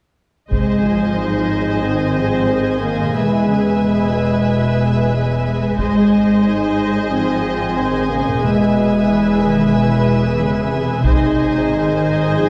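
Triumphant and heroic, this cinematic orchestral film score moves at 91 BPM in a straight 4/4, its harmony alternating between Ab and E chords. Mellow French horns hold sustained chords at the front of the blend, while a rich, bowed viola section supplies the accompaniment and lush violins add a second line with vibrato and a smooth top. Underneath, clear, focused double basses and dark, woody cellos share the bass, with the cellos set in the background. A taiko ensemble played with heavy sticks sounds close and dry, striking in short bursts that begin at 0.5, 5.8 and 11.0 seconds. The strings and horns sit in a wet scoring-stage reverb, heard from further back in the room, in this cut from a longer piece.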